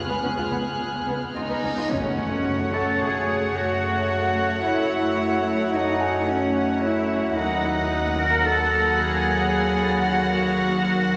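In a straight 5/4 at 110 BPM, this cinematic suspense cue moves through F# dorian with a mysterious, uneasy air, cut from a longer piece and bathed in a cathedral reverb that lingers for seconds. Two violin sections carry the melody and a second line with a soft, floating sul tasto tone, while a further violin section adds a high texture in the background from 0.0 to 1.6 s and returns at 7.4 s. Beneath them a dark, woody viola section holds accompaniment with vibrato, the cello section sits up front on the bass, and a rich double bass section deepens the low end. A huge, dark reverse cymbal rises at 1.4 s into a background impact at 1.9 s, where a French horn section enters on sustained chords with light vibrato as the harmony moves from C#7 to F#m. A felt-muted upright piano adds a very quiet, mellow, vintage texture in its upper register throughout, and the chords shift to D#m at 7.4 s.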